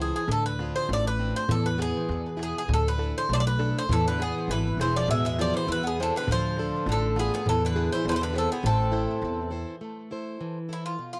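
A bright, metallic Greek bouzouki leads up front with tape echo, joined by a lower second bouzouki line from 3.9 s, over a boxy parlour acoustic guitar with finger squeak, woody pizzicato upright bass and a clay-shelled darbuka in the background, as this moody, cool Greek folk excerpt moves through an A harmonic minor progression and gradually speeds up in a dry, close 1970s-style studio sound.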